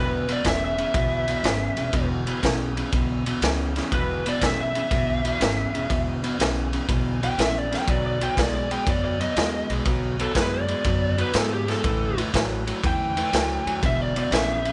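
Electric blues shuffle, rollicking and gritty, cut from a longer piece: an overdriven lead guitar through a small cranked amp solos throughout over a slightly broken-up, lo-fi riff guitar from a small old amp and a woody pizzicato upright bass, while a raw, saturated garage drum kit with punchy kick, medium-tuned snare and dark ride cymbal comes in at 0.3 seconds, up front in a pumping small room under light reverb with a rolled-off top.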